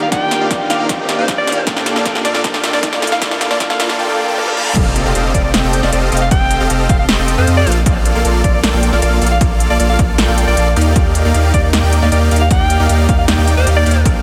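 Future bass at 155 BPM in a half-time feel, bright and playful, where a clear alto saxophone sings a jazzy solo melody with scooped notes and gritty sampler texture over a huge, detuned supersaw riff, a clean tine electric piano and a very quiet riser with reverse cymbal during the build-up, as punchy overdriven kick and big-room drums roll through fills and then drive a drop at 4.8 seconds that brings in a deep, saturated sub bass, the dreamy mix soaked in vast reverb and pumping sidechain.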